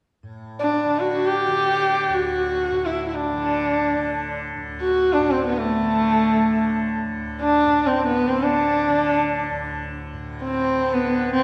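Hindustani classical music in free time and raga khamaj on D, meditative and devotional, where a softly plucked, buzzing tanpura drone shimmers low in the mix from 0.2 s and a single bowed sarangi enters up front at 0.6 s with a warm, expressive voice, light vibrato, soft attacks and gliding portamento ringing through its sympathetic strings, both set in the lush reverb of a recital hall in this short excerpt from a longer piece.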